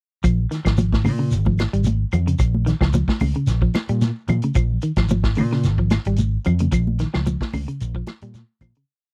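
A dark, round fingered electric bass sits up front in this short, driving and defiant afrobeat piece in Bb dorian at 111 BPM, playing a syncopated riff over a lightly swung 4/4 groove on a held Bbm7 chord. A vintage drum kit with a tight kick, medium-tuned snare and rolled-off top drives the afro kit groove. A clean, picked electric guitar repeats an arpeggiated ostinato alongside a grainy shekere and woody claves tapping a five-stroke time line, while damped, high-tuned congas enter at 0.8 seconds. The dry, close 1970s-style studio sound carries through until the piece fades out from 6.7 seconds.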